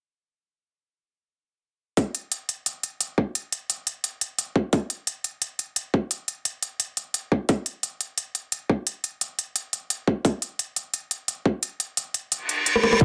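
Spacious and tense, this half-time drum and bass excerpt at 174 BPM brings in a tight, layered electronic kick and a crisp, tape-warm kit of hi-hat and rim click at 2.0 seconds under light reverb, with a reverse cymbal up front from 12.4 seconds, a drum fill at 12.7 seconds, and a swirling, thick, phased detuned saw bass sitting in the background on F#1 at 13.0 seconds.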